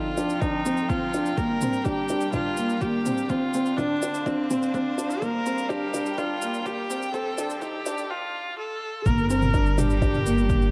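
A felt-muted upright piano opens this cinematic, moving piece of piano and strings electronica at 0.0 seconds. It plays a soft, intimate riff with audible action noise. Alongside it, a solo viola carries an earthy, smooth-topped melody with light vibrato, while a distant string quartet holds rich, bowed chords through a low-pass filter sweep. Layered electronic shaker, toms and a punchy kick drum drive a straight 4/4 pulse at 125 BPM in G minor, moving through Fadd9, Gm and Dm7. The passage builds up to a short break at 8.1 seconds, and then the drop arrives at 9.1 seconds with a deep, rumbling detuned saw bass on G1 that pulses with sidechain pumping. A lush hall reverb and dark, warm production wrap this fragment of a longer piece.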